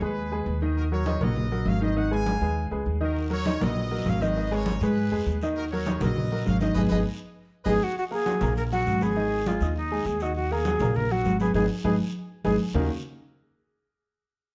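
Ringing, vintage-toned congas and a woody, pizzicato upright bass drive a fast, straight salsa groove, and a raspy, saturated guiro joins at 3.2 seconds. The clear, slightly worn grand piano keeps up a short-sustained accompaniment while a tight, smooth-topped trumpet section carries the melody until a breathy, crisp-attacked jazz flute with plate reverb takes it over at 7.7 seconds. The whole band hits accents in this passionate, fiery excerpt, set in a dark studio production with moderate room reverb.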